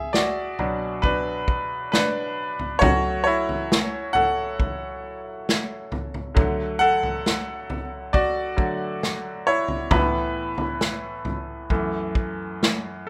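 Heartbroken and emotional, this short fragment of a pop ballad moves at a slow 68 BPM in straight 4/4, set in F# minor. A bright grand piano carries the accompaniment from the first moment through 13.1 seconds, its brilliant, intimate tone sitting up front with audible action noise, spanning F#2 to F#5 and taking the solo role throughout. An unplugged acoustic drum kit joins at 0.1 seconds with kick drum, snare and toms played with bundle sticks, pairing a tight kick and medium-tuned snare with a distant, roomy studio-room character. The harmony travels from Bm through F#m and D to Asus2, settling on F#m7 near the close. Light reverb and a rough home-demo mix give the whole an unpolished, personal feel.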